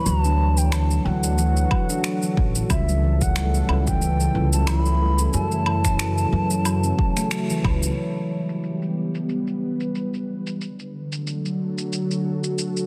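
A dense, heavily limited mix with light studio reverb frames this mystical organic downtempo excerpt, where an airy, close-miked bamboo bansuri with vibrato floats over bright, ringing handpan arpeggios, a woody, thumpy pizzicato upright bass, a smooth, detuned sawtooth analog pad with chorus and sidechain pumping, a layered, overdriven electronic shaker, finger snaps and woodblock, and a deep overdriven electronic kick, until the bansuri, handpan, bass and kick have all stopped by 8.0 seconds, leaving the pad under a filter sweep alongside the percussion.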